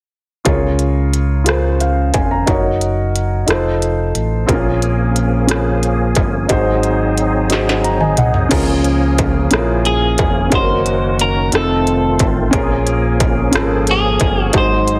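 Swaying in a slow 6/8 at 60 BPM in Db major, this jubilant, soulful gospel excerpt opens at 0.4 seconds on a woody upright piano with long sustain, joined by a round, punchy dub bass and an industrial drum kit with a distorted kick, clanging snare and crisp hats; a reedy tonewheel organ with slow rotary speaker and key click enters at 4.5 seconds, drum and piano fills mark the turn to the second half, and a clean, picked electric guitar melody with lush chorus and slapback echo arrives at 9.9 seconds, the mix carrying a heavily compressed, radio-like sound with light digital ambience.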